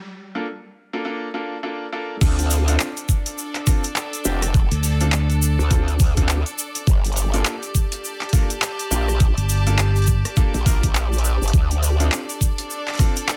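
Swung sixteenths at 103 BPM in 4/4 drive this swaggering, gritty glitch hop excerpt in G minor. It opens on a short break and build-up where a brilliant baby grand piano plays stabs, its action noise audible, pumping under sidechain and trailed by delay over a rootless Gm9. At 2.2 seconds the drop hits: an overdriven, knocking electronic kick sits up front, a dubstep kit re-recorded in a small room adds crash, handclaps, rim clicks and bright hats, and a grainy tube shaker stays close and dry. Beneath, a wobbling growl bass with formant filtering, chorus and tube saturation snarls aggressively, while an intimate chamber string section, bowed sul tasto with light vibrato and a soft attack, pumps along in the background. The harmony shifts between Dm7 and Gm9 inside a digital ambience, and a punchy fingered electric bass cuts in briefly at 4.7 and 9.4 seconds.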